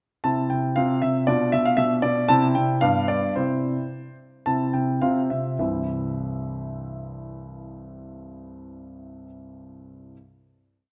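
A polished grand piano sits up front in a wet recital hall, its long reverb tail blooming around every note. This is a brief, complete classical-period sonatina, playful and cheerful in mood, moving in a straight duple metre. The solo piano carries a single-line melody above repeated bass notes, ranging from C2 up to A5 with a clear, present tone. The opening phrase moves through C, F and B diminished harmonies before reaching a G7 that resolves back to C. The music starts slowing down around 2.8 seconds and eases into a short coda. A final C chord arrives at 5.6 seconds and rings out into the hall.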